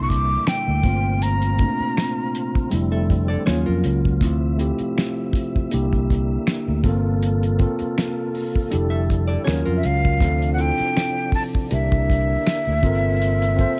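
R&B and neo-soul with a sensual, lightly swung 4/4 feel, cut from a longer piece, where a breathy, up-front jazz flute with vibrato and slapback echo carries the melody over mellow tine electric piano, smooth tonewheel organ chords with chorus vibrato and key click, a round fingered electric bass, and a dry, cloth-damped drum kit of fat snare, tight kick, hi-hat and finger snaps, while a dark, clean hollow-body jazz guitar adds brief second-line phrases from 2.9 seconds, set in a small room.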